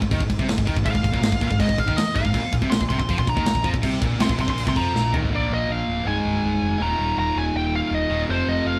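A heavy, relentless metal passage at 162 BPM opens with a bright, high-gain distorted riff guitar up front, a sludgy overdriven second guitar sitting in the background, a growly, punchy overdriven picked bass and a tight studio drum kit with crash, toms and a mid-forward snare. At 0.9 seconds a dark, high-gain lead guitar enters with a solo high above the riffs, and a drum fill closes the first section. Around 5.3 seconds the drums and the sludgy guitar drop out, leaving the riff guitar, bass and lead to carry the final stretch through chords moving from Bb and Ab/C to Eb5 and F5, all captured as a band playing live in one room with moderate reverb.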